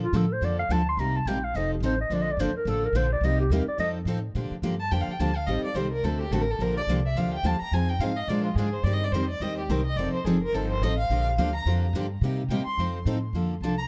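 A mellow clarinet opens this playful, swinging slice of acoustic string swing, its subtone and light vibrato coloring the melody with scooped notes and a vintage jazz feel, set in plate reverb until it falls away at 3.9 seconds. A bowed violin then takes over the solo from 4.8 seconds, full of vibrato and portamento, sounding distant yet expressive through its tape echo. Two picked steel-string acoustic guitars carry the accompaniment throughout: one bright and full-bodied with fresh strings, the other further back, where a finger squeak can be heard. Underneath, a pizzicato upright bass on gut strings gives a woody, thumpy pulse up front. The changes move through major seventh, minor seventh and dominant chords, and the whole piece sits in a dark production with light reverb, cut from a longer performance.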